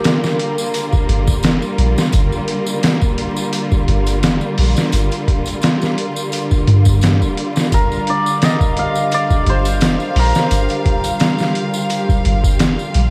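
A gritty, pitched-down sampler-style drum kit with a thumpy kick and studio reverb sits up front in this brooding, dark trip hop piece at 86 BPM in G minor, joined by a compressed, saturated tambourine, a lush bowed symphonic string section holding a Gm7 chord, a deep, round 808-style bass from 1.1 seconds, a shimmering hammered dulcimer melody with tape echo that returns at 7.7 seconds, and a dreamy reversed, granular texture swelling in the background from 8.8 seconds, all over small-room ambience and vinyl crackle.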